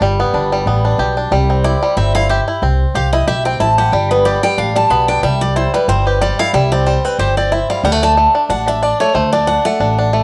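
Bluegrass in C major at a driving, joyful 184 BPM with a light swing, where a twangy, fingerpicked banjo carries the melody over a woody, thumpy pizzicato upright bass on gut strings, and a full-bodied picked dreadnought guitar with audible finger squeak enters at 1.6 seconds for a solo, all moving through G, C and D chords and captured on a cassette home recording with moderate studio reverb in this cut from a longer piece.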